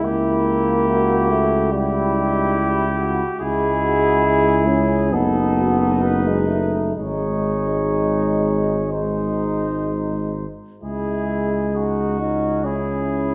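Moderate scoring-stage reverb gives the cornet, horns and euphonium a roomy, distant glow, with the tuba set up front. This is a classical, hymn-like passage for brass band, elegiac and melancholic, moving in 4/4 with a flexible rubato feel; it is a short section from a longer piece, running from 0.0 to 13.3 seconds. A warm cornet carries the melody over a mellow French horn section singing a second line in the background, while a brilliant trombone section and a euphonium with light vibrato fill out the accompaniment. A dark tuba with a smooth top anchors the bass, and every part sounds together from start to finish. The harmony opens on a diminished chord, settles onto a minor chord, passes through a suspended chord, and comes back to the minor chord near the end.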